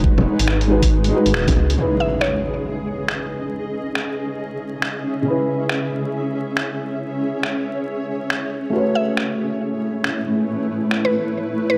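Swung 16ths at 138 BPM in 4/4 drive this nocturnal, ghostly future garage fragment in C# minor, where a knocking electronic kick, a rumbling detuned saw bass and a very quiet, glassy harmonics texture open over a blurred granular cloud pad and a soft, felt-muted upright piano, both pumping with sidechain, the piano low-pass filtered with tape echo and then swept from 1.8 s as an electronic impact hits and the bass falls away, the kick having already dropped out at 1.5 s, while a muffled lo-fi sampler kit of bongos, finger snaps and hi-hat carries on up front, a woody mallet-like FM pluck with chorus and analog delay surfaces briefly and returns at 9.0 s, and the chords move from G#m7 to C#m7 to A69 under a gritty hardware grain and vinyl crackle.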